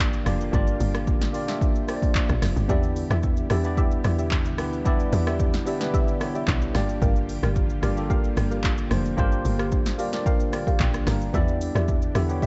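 Hypnotic and deep, this amapiano excerpt moves at 111 BPM in a straight 4/4, cut from a longer piece and circling between Gm7 and Em7 chords. A worn, slightly out-of-tune tine electric piano carries the accompaniment through a combo amp, adding a short fill at 10.3 seconds. Beneath it, a tight, percussive log drum bass with an FM bite and a noise layer gives each note a fast attack that decays quickly. The deep house drum kit sits up front, layering a punchy kick and snare with smooth hi-hats, handclaps, rim clicks and shaker, all re-recorded in a small room. In the background, a vintage string machine holds full, sawtooth cello chords with a sub octave, a slow attack, ensemble chorus and sidechain pumping. From 2.7 seconds a soft, detuned chord stab enters, warbling through chorus and digital delay within a dark production that keeps the top end rolled off.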